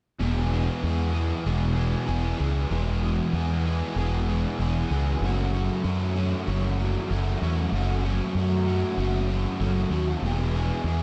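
A double-tracked, overdriven semi-hollow guitar plays a picked riff with subtle chorus. A fuzzy, growling fingered electric bass sits up front beside it, and both enter together at 0.2 seconds in this blissful, hazy rock clip at 96 BPM in E major. The harmony moves from E to F#m and back to E, and a lush hall reverb soaks the mix in a dreamy haze.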